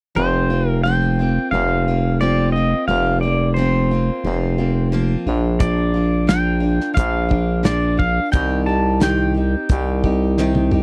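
Folk rock and heartland rock at 88 BPM in 4/4, dusty and reflective, this short cut from a longer piece sets a bright, clean pedal steel guitar melody, played with fingerpicks and slide and shaped by volume swells, over a picked steel-string acoustic guitar and a thick, growling FM bass, moving from Fsus4 to Bb and Cm. A damped 70s drum kit enters at 5.6 seconds with a tight kick and medium-tuned snare, and a drum fill arrives at 10.4 seconds. The sound is a dry, close 1970s-style studio recording, with the bass, drums and pedal steel up front.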